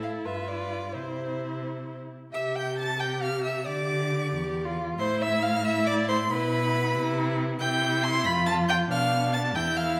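A quick, cheerful classical-period movement for string quartet in a rubato 6/8, cut from a longer piece, where a warm first violin with expressive vibrato and portamento sings the melody high above a smooth, even second violin, while a rich viola with soft-attacked, sliding accompaniment and a focused, up-front cello bass fill out the texture, all glowing in a wet recital-hall reverb as the music moves from its opening section into a new one at 2.3 seconds.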